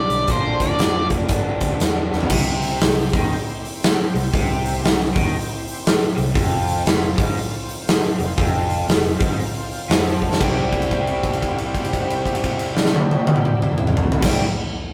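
Blues rock power trio with a southern rock edge, this gritty, driving excerpt swings at 118 BPM in C major, where a dark, up-front octave-fuzz lead guitar and a very quiet, distorted bluesy second guitar sound only until 1.1 seconds, while a bright, double-tracked garage guitar riff with spring reverb, a round, foam-muted fingered bass, a very quiet, shouting tonewheel organ with key click and slow rotary swirl, and a huge arena drum kit with a punchy kick and fills at 2.1 and 10.2 seconds drive on through a held note from 10.4 seconds in a rough, stone-room rehearsal sound.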